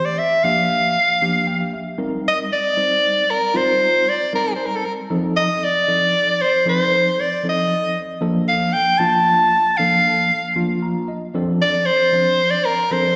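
Heard live through a venue's PA with a recital-hall reverb and a dulled top end, this nocturnal, driving jazz excerpt in 6/8 puts a bright, close-miked soprano saxophone up front, soloing with vibrato over a worn, slightly out-of-tune tine electric piano played clean through its built-in speakers, both parts carrying a slapback echo, while the piano adds short fills at 1.2 and 10.6 seconds.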